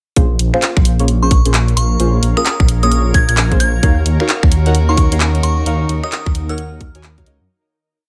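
Set in a digital ambience, this moody, skippy two-step UK garage piece in Bb minor at 131 BPM, swung on the 16ths, rides a single drop built on a tight, up-front kick, tape-warm snaps, handclaps and hi-hats, a rumbling detuned saw bass and soft chord stabs with chorus, phaser and tape echo moving from Bbm9 to Ebm9, while a glassy FM bell adds short answering phrases, a blurred granular pad drifts in at 1.1 seconds, and a distant, reedy chamber violin section joins at 3.8 seconds before a fade-out from 5.1 seconds.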